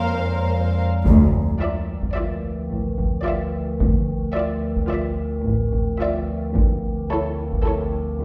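Heard in a reverberant church or concert hall, this eerie, mysterious passage of suspense film score is cut from a longer piece and moves in 5/4. Up front sits a metallic, inharmonic drone with a slow attack, long release, chorus and its own reverb. Around it a muted string section plays con sordino with a veiled tone: a lush studio violin section carries the melody, a close symphonic violin section adds a second line, and smooth-topped violas fill in the accompaniment, all with soft attacks. Dark cellos and double basses, lightly vibrato and set in the background, hold down the bass. At 1.1 s the harmony shifts from Bbsus2/F to Dmadd9 with a band accent, and a taiko ensemble struck with heavy sticks enters in a live room. A final move to A/D arrives at 6.6 s.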